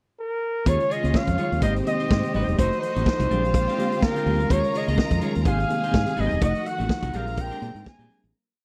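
A dry, close 1970s-style studio sound frames this short, joyful disco piece, which opens with a warm flugelhorn pickup before the full band enters at 0.7 seconds and fades out from 6.4 seconds. Up front, the flugelhorn carries scooped, hook-like phrases with a slapback echo over a punchy vintage drum kit playing a four-on-the-floor beat with sixteenth-note hats, a fingered electric bass weaving a syncopated line with chromatic approach notes, and a very quiet, bright, high-tuned conga groove. In the background, a dark, choppy clean electric guitar and a reedy electric piano with syncopated chords sit beneath a lush string section's long high lines, while a second, very quiet string section holds a smooth sustained pad with portamento through the Eb9sus4, Abmaj7, F7b9 and Bb13 changes.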